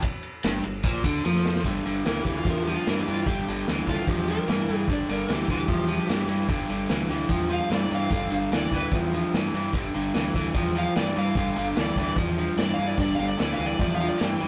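A straight 4/4 drive at 148 BPM, set by a vintage drum kit with dark cymbals, a punchy kick and a rolled-off top, anchors this gritty, swaggering blues rock and southern rock power-trio excerpt, where a bright, double-tracked overdriven electric guitar riff sits up front on a G5 chord over a growling fingered bass with its own overdrive, and after a drum fill at 1.3 s an overdriven slide guitar plays a warm solo from 2.1 s through the rough, tube-saturated rehearsal-room sound with moderate reverb.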